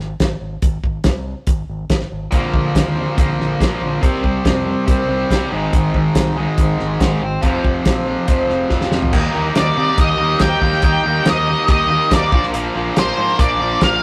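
A straight 4/4 pulse at 141 BPM drives this swaggering, brooding classic rock excerpt, where a damped, dry 70s drum kit with a fat snare and tight kick sits up front over a growling, overdriven fingered bass, joined at 2.3 seconds by a sludgy dark guitar, a tight bright distorted guitar and a very quiet, woody, shimmering fingerpicked twelve-string acoustic, before a drum fill at 8.7 seconds ushers in an octave-fuzz lead guitar at 9.6 seconds, all in a rough rehearsal-room sound with stone room reverb and tube saturation over chords moving from Ab through Cm7 and Fm to Eb and Bb.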